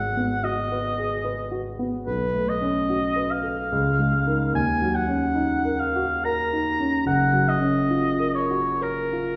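In a rubato three-four lilt, this pastoral, dreamy impressionist classical duo sets a warm, lightly vibrato-tinged oboe melody against a dark, mellow grand piano accompaniment with deep bass, its chords drifting through a wet recital-hall reverb that places the listener further back in the room.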